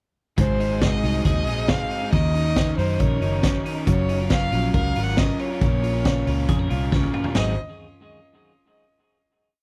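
Jangly indie pop in Ab mixolydian at 138 BPM, bright and breezy, with a smooth, vibrato-laden bowed violin singing motif-based phrases over twangy fingerpicked twelve-string arpeggios, lo-fi overdriven garage-guitar strumming in open chord shapes, a round, foam-muted fingered bass line with slides, and a gritty, up-front garage drum kit with a high-tuned snare, boomy kick and off-beat open hats, moving through Ab7, Ebm7, Gbmaj7 and Bbm in a dry, close 1970s-style sound before a drum fill at 6.9 seconds leads to a final Ab7 chord at 7.4 seconds.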